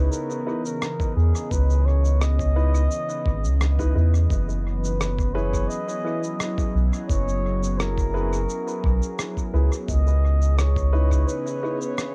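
Ambient dub at 86 BPM in C# dorian, hazy and meditative and cut from a longer piece, where a deep, round sub bass sits up front beneath a warbling, detuned tape-like pad with chorus and phaser, woody upright piano stabs and a dark, veiled trumpet with bucket mute and light vibrato both carry dub echo, a muffled sampler-style shaker and rim click ticks along, and a thumpy kick entering at 1.0 s stays in the background, the harmony moving from C#m9 to F#9sus4 and back on a lo-fi home cassette recording.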